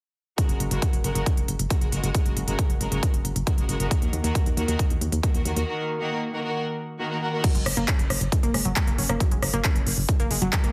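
Uplifting, soaring trance at 136 BPM in F# major, where clear, lush strings hold pumping chords from F#add9 to D#m over a punchy kick, crisp-hatted big-room drums with handclaps, rim clicks and crash, and a round, dark FM bass under a filter sweep, until after a break from 5.7 to 7.4 seconds a detuned sawtooth unison pluck enters at 7.4 seconds with cassette-tape grit and dub echo, all in a dense, heavily limited mix with light digital ambience.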